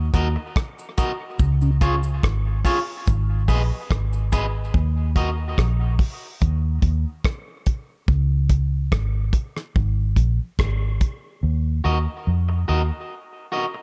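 A dark, round, foam-muted electric bass sits up front in this heavy, spacious dub reggae excerpt in Eb minor at 72 BPM, playing from the start until 12.9 seconds in a low register from Ab1 to F2. A damped 70s drum kit with a tight, dry kick, hi-hat and rim click and a rolled-off top shares the foreground until 11.2 seconds, while a cabasa adds faint shaken texture in the background through 4.5 seconds, trailing dub echo. A twangy, slightly broken-up electric guitar carries the accompaniment with dub echo, dropping out after 5.3 seconds and returning at 11.8 seconds for the closing stretch. A mellow tonewheel organ with key click and slow rotary speaker makes a brief background appearance on a single Db3 note. The chords move from Ebm through Db and Abm, then to Eb5, Db5 and Absus2 shapes before landing back on Ebm, all framed by a small room and an echo-heavy mix.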